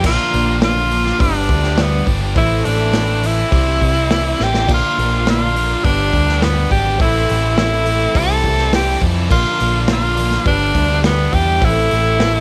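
A straight, steady four-beat groove from a natural country drum kit, with a punchy kick, medium-tuned snare, hi-hat and crash, drives this nostalgic, jangly slice of folk rock and heartland rock cut from a longer piece, with a drum fill at 4.4 seconds. Up front, an edgy tenor saxophone carries the melody with vibrato, scooped notes and forceful pop phrasing, its sound trailed by tape echo. A round picked electric bass sits prominently beneath it, while a shimmering, octave-doubled twelve-string acoustic guitar, complete with finger squeak, and a bright, double-tracked overdriven guitar riff sit further back in the mix. A very quiet, warm concert grand piano adds soft, open accompaniment. The harmony cycles through Bb, G, Am and C under light reverb, giving the whole passage a wistful character.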